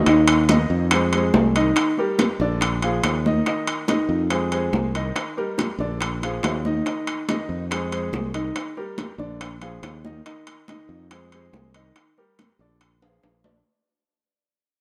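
A rough home-demo mix with light reverb carries this lively, danceable Afro-Cuban jazz fragment in straight 4/4, where a brilliant, woody upright piano and a growly, punchy fingered electric bass sit up front over a repeating four-chord cycle, high-tuned congas snap with hard hands, compressed low-tuned bongos murmur in the background, and ringing metal-shell timbales join in, with a drum fill arriving at 13.0 seconds as the whole passage fades.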